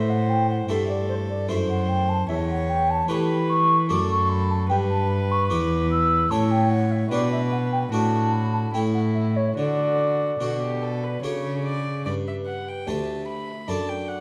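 Classical baroque-style sonata movement with continuo in D major, a serene, dance-like 3/4 at 74 BPM, where a close, nasal gut-string violin carries the melody beside a distant, mellow wooden flute with vibrato on the second line, over a dry, plucked harpsichord with two sets of strings filling the accompaniment and a rich, reedy cello sitting up front on the bass, all in a dark production with the reverb of a recital hall.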